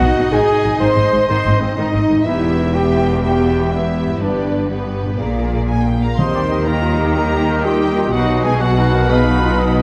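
This cinematic, heroic adventure cue opens mid-flow with the orchestra already in full voice. A lush studio violin section carries the melody with smooth vibrato, while a second violin line, violas and a distant cello section sit in the background beneath it. Bowed double basses lay an expressive low foundation, a mellow French horn section holds sustained chords, a close-miked trumpet punctuates with stabs, and a very quiet, thumb-plucked concert harp rings out arpeggios. Moving at 123 BPM in 12/8 with a straight feel, the harmony travels from G# through Em and G to A#7, giving the music an adventurous, triumphant sweep. At 6.2 seconds the texture thickens as a vintage-toned oboe and a soft, roomy clarinet add second lines, a dark, punchy trombone section joins the chords very quietly, and calf-headed timpani strike a single brief Eb. The passage moves to Eb and then B before being cut off at 9.8 seconds, heard in a moderate scoring-stage reverb.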